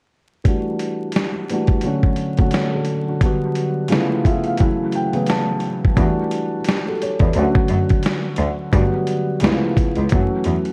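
An 87 BPM lo-fi hip hop groove in 4/4 swings its sixteenths as a gritty, compressed sampler-style drum kit with a thumpy kick and medium-tuned snare sits up front beside a felt-muted upright piano, whose dark, intimate chords in E dorian carry audible action noise under a filter sweep and a fill from 3.9 to 6.0 seconds. At 6.0 seconds a distant, bowed cello with focused vibrato enters beneath as the Em11 to F#m7 progression comes around again in this melancholic, hazy fragment of a longer piece. Worn, warbling cassette tape, vinyl crackle and light small-room reverb lend the whole a dusty, drifting patina.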